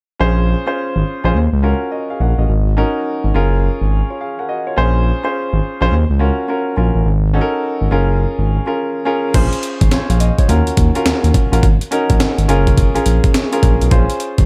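Swung sixteenths at 105 BPM in 4/4 set the pace for this confident, punchy R&B passage in new jack swing style, in Bb minor, cut from a longer piece. A polished concert grand piano with deep bass accompanies through a repeating Bbm7, Ebm7, Ab7sus4, Gbmaj7 progression, over a smooth, wave-folded sawtooth-and-triangle synth bass that glides with portamento and vibrato. At 9.3 s a gritty, compressed breakbeat kit arrives up front, its thumpy kick, medium-tuned snare, hi-hat and crash roughened by overdrive and gated reverb, all within a dry, close mix.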